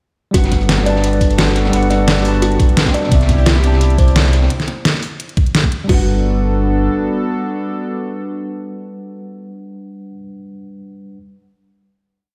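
A deep, sine-toned sub bass with an added octave anchors this short, uplifting liquid drum and bass piece at 173 BPM in G major. Its long gliding notes are tube-saturated and up front over a knocking, overdriven electronic kick and a rolling two-step pop kit with a deep snare, hats and crash, while a dark, gritty looped breakbeat sits in the background. A clean tine electric piano holds spread chords with syncopated pushes through delay, joined by a smooth, detuned sawtooth pad pumping with the sidechain and a woody kalimba arpeggio loop drifting against the bar. As the kick and pop kit stop at 6.0 seconds, the piano rings on through a final Gmaj7 chord in stone-room ambience until 11.2 seconds.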